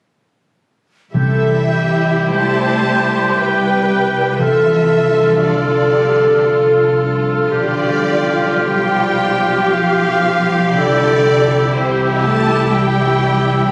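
A lush violin section carries the tender melody, bowed with expressive vibrato, soft attacks and gliding portamento, sitting close in this lyrical, rubato slow movement in triple time, cut from a longer romantic orchestral piece. Beneath it a second violin section with a smooth top, a solo oboe with light vibrato and a small, airy flute group playing high in straight tone weave supporting lines. A viola section murmurs accompaniment in the background, while a French horn section holds sustained chords and a very quiet, mellow concert harp rings out fingerpicked arpeggios. Cello and double bass sections anchor the bass with a smooth, even bowed tone, and dry timpani struck with medium mallets sound in the background only until 5.9 s. The harmony drifts gently from C through Dm7/C and G7/B before settling back on C, all bathed in a long scoring-stage reverb and captured on a phone in the room.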